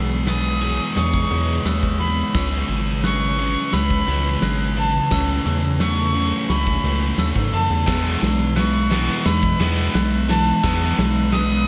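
Lightly reverberant, this hopeful, cinematic post-rock build-up at 87 BPM in E major sets a thick fuzz guitar riff and an up-front, rubbery square-wave bass under a huge arena drum kit with punchy kick and bright cymbals playing a fill throughout, while a distant, reedy violin carries the melody through tape echo, a very quiet twelve-string electric guitar and a ringing glockenspiel with tape echo spin arpeggios over a calm, organ-like pad, and a tight distorted guitar riff joins in the background at 7.9 s.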